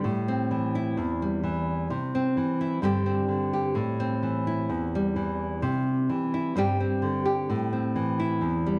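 A straight, even 4/4 pulse drives this short, danceable highlife clip, carried entirely by a solo nylon-string guitar that is fingerpicked in a classical manner and sits up front in the mix. The bright, fresh-stringed guitar cycles through Am7, C and Gsus4 back to Am7, giving the passage a warm mood. A moderate echo-chamber reverb and studio ambience surround the playing, and lossy compression artefacts are audible.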